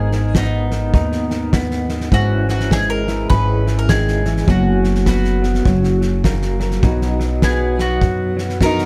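A swung 4/4 groove at 102 BPM drives this pastoral, hopeful acoustic folk piece in B major, where a picked, woody mandolin carries the melody over fingerpicked nylon-string guitar sitting in the background with audible finger squeak, slightly broken-up, lo-fi electric guitar arpeggios with tremolo through a small old amp, a growly, thumpy pizzicato upright bass, and a loose indie drum kit with a fat snare and punchy kick up front in a pumping room, before a metallic, nasal resonator slide guitar adds a second line at 7.4 s, the whole set in light reverb.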